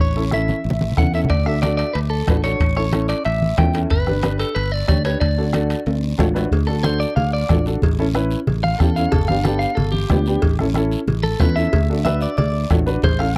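A dry, close 1970s-style studio sound frames this joyful, danceable cumbia excerpt at 184 BPM in D major, where a round, up-front fingered bass and a woody upright piano support a clean, picked electric guitar melody touched with spring reverb and slapback echo, with soft-handed congas, a soft-beater bombo, raspy guiro, ringing timbales and cowbell that join at 1.3 seconds, drum fills, and a guitar solo taking over from 6.5 seconds.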